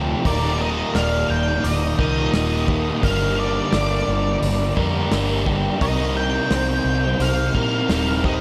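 A huge ambient reverb soaks this dreamy, hazy mix, cut from a longer piece of shoegaze and dream pop rock in Eb major, moving at 86 BPM in a straight 4/4. From the first moment, an electric guitar through a small old amp plays slightly broken-up, compressed arpeggios high up, colored by analog chorus and delay, while a crunchy overdriven guitar carries a riff wrapped in reverse reverb. A thick fuzz guitar sits in the background with its own distorted, chorused riff, and a vintage muted fingered bass adds a dark, round, foam-muted low end. At 0.3 seconds a dark octave-fuzz lead guitar enters with a narrow melody between D5 and G5, trailed by analog delay, as a loose indie drum kit joins with hi-hat, a tight kick and a medium-tuned snare in a small acoustic room. The harmony drifts from Ebmaj7 to Gm and then to Cm7 at 5.8 seconds.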